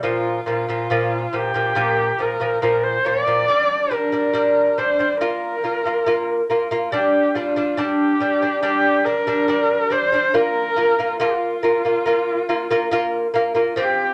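Mongolian folk at a proud, galloping 70 BPM in Bb gong mode, this short cut from a longer piece sets a husky, bowed horsehead fiddle melody with vibrato and portamento up front over bright, delicate fingerpicked lute arpeggios on doubled nylon strings, all in a wet studio reverb, with the music moving into a second section at 6.9 seconds.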